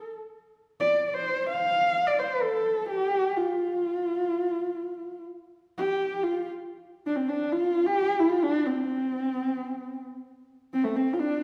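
A lone horsehead fiddle opens this brief Mongolian traditional passage, its bowed horsehair strings giving a husky, warm voice with vibrato and gliding portamento as it moves through an F gong mode in free time. The mood is proud and galloping, and the expressive line shifts into a new section at 6.6 seconds before the fragment, cut from a longer piece, ends at 11.4 seconds. The fiddle sits up front while a wet recital-hall reverb places the listener further back in the room.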